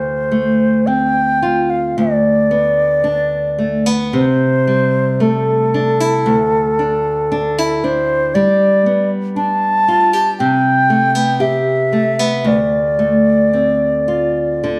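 A woody, pure-toned baroque flute with vibrato and a crisp attack sings a haunting, mournful Celtic slow air in D dorian from the first moment, close and up front over a bright, fingerpicked nylon-string guitar with fresh strings, the pair drifting in free rubato at around 52-60 BPM through chords from Dm7 to G and Cmaj7 before settling back on Dm7, all held in the moderate glow of a recital hall in this 14.8-second excerpt from a longer piece.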